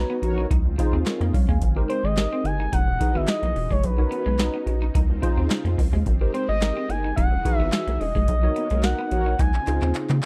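Smooth and feel-good, this early-eighties boogie funk clip, cut from a longer piece, moves at 108 BPM in a straight 4/4, cycling through lush major-ninth chords from Bmaj9 through Dbmaj9, Abmaj9 and Emaj9. Up front, a booming analog drum machine lays down a deep kick, crisp snare, metallic hi-hats and handclaps with a short room on the snare, claps and hats, while a rubbery, hollow square bass with a resonant filter pluck and a moving notch bounces darkly beneath. A smooth, nasal sawtooth lead carries the melody with vibrato, chorus and slapback echo, backed by a worn, slightly out-of-tune tine electric piano, lightly overdriven through a combo amp, and a picked guitar riff at the edge of break-up drenched in lush chorus. A thick, detuned unison pad sits bright in the background, and a round, brassy synth section adds a brief second line at 0.2 seconds and again at 8.7 seconds. The band hits accents at the opening and closing, and a drum fill starting at 9.4 seconds rounds off the passage, all set in a dry, close 1970s-style studio sound touched with digital ambience.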